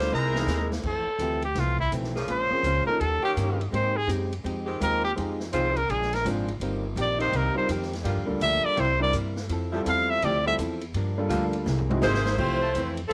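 Energetic and joyful, this short cut from a longer big band swing piece moves at 166 BPM with a strong swing feel: a drum fill, brief stabs from the trumpet section and a short melodic line from the bright saxophone section open it, then a punchy, forceful solo trumpet with scooped notes and light vibrato carries the melody from 0.9 to 10.5 seconds. Beneath it, a saxophone section holds smooth sustained chords, a grand piano with audible action noise and a clean hollow-body archtop guitar comp, and a woody, thumpy upright bass sits up front while the distant, roomy drum kit uses dark cymbals. The saxophones return near 12.0 seconds to close the phrase on Fmaj7, and the whole track carries the small-room sound and tape haze of a home cassette recording.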